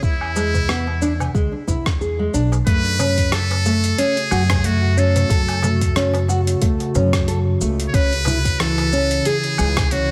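Organic downtempo at 91 BPM with a mystical, warm mood and a gentle 16th-note swing, where a buzzy, metal-muted trumpet carries the melody with digital delay over fingerpicked nylon-string guitar arpeggios, also delayed, a woody, thumpy pizzicato upright bass with sidechain pumping, a gritty sampler-style kit of hi-hat, rim click, shaker and woodblock, a deep electronic kick, and a crisp, dry darbuka in the background from 0.4 s, while a warbling, nostalgic lo-fi pad with chorus and pumping enters with a slow attack at 3.4 s as the chords move from E7 to F#m and then C#m in a small, lightly reverberant room.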